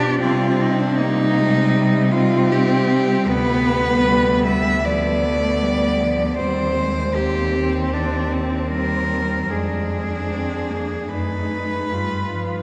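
Four bowed cellos sound together from the opening of this solemn, yearning classical fragment in rubato 4/4: an intimate, up-front melody with light vibrato and an airy bow sings over a rich second line and a softly attacked accompaniment that both glide with portamento, while a smooth, even bass anchors harmony moving from Cm through Dm6 to a closing G7, the ensemble steeped in a dark, wet cathedral reverb.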